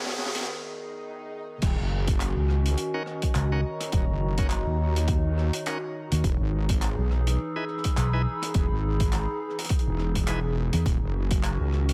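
A warbling, nostalgic pad and a crunchy breakbeat kit open this swaggering, playful glitch hop excerpt, while an electronic riser and swell and a filter sweep build toward the drop at 1.6 seconds. The pad carries sustained chords with lo-fi 12-bit sampler grit, chorus and sidechain pumping. The drums sound dark and gritty, with a high-tuned snare, handclaps, rim clicks, high-passed hats and dusky cymbals, all swung on the sixteenths. At the drop, a layered, punchy electronic kick and a heavy, detuned sawtooth wobble bass arrive up front. From 2.5 seconds a second, dimmer pad drifts in the background, and from 2.9 seconds a bright, shouting tonewheel organ fires lightly overdriven stabs with a stopped rotary speaker and dub echo. From 3.4 seconds, an amped fingered electric bass sits up front as the harmony moves between Emaj7 and Ebm7.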